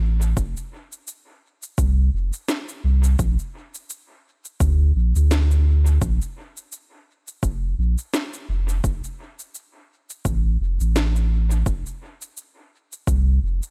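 A deep, round sub bass with a fast attack and long sustain opens this hazy, spacious ambient dub piece, sitting up front with its sine-like tone. Just after, an electronic cabasa and woody snare arrive, overdriven and sent through dub echo and a small-room ambience. A punchy, layered electronic kick, also overdriven and up front, then settles into a lightly swung groove within an echo-heavy digital space in this short cut from a longer piece.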